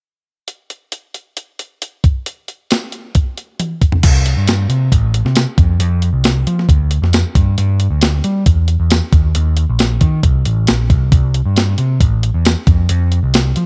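The recording has a digital ambience, with both parts sitting up front in the mix. This upbeat, jangly indie rock piece in C major moves at 135 BPM in a straight 4/4, cut from a longer piece. A clean 12-bit drum machine opens on its own at 0.5 seconds, with a sampler-style, tape-tinged character built from a thumpy kick, a medium-tuned snare, hi-hat, crash cymbal, tambourine and toms. A drum fill at 3.6 seconds leads into the next section, where an overdriven picked electric bass joins at 4.0 seconds. The bass is bright, growly and punchy, with an amped edge, ranging from A1 to G3 as it drives the rest of the excerpt alongside the drums.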